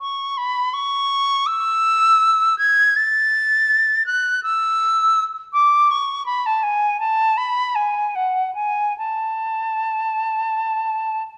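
A silver concert flute plays alone from 0.0 to 11.2 s, its pure, metallic tone shaded with vibrato and tongued notes, ranging from F#5 to A6 in this brief passage from a longer baroque-style fantasia. The mood is serene and dance-like, in A major at 80 BPM in 4/4, with uneven beats and a free, rubato feel. A moderate recital hall reverb surrounds the flute, and the worn, warbling sound of old cassette tape adds a warbly pitch drift.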